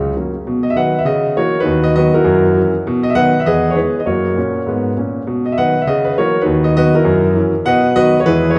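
A warm concert grand piano plays solo and up front, with deep bass and long sustain across a range from C#2 to F#5, in this exuberant, swinging stride jazz excerpt at 200 BPM in B major. Over about 8.6 seconds the harmony circles through B, F#7/C#, B/D# and F#7 before reaching E, then repeats the pattern. A wet concert hall reverb with a 1.8-second decay surrounds the piano with the spacious air of a church or large hall.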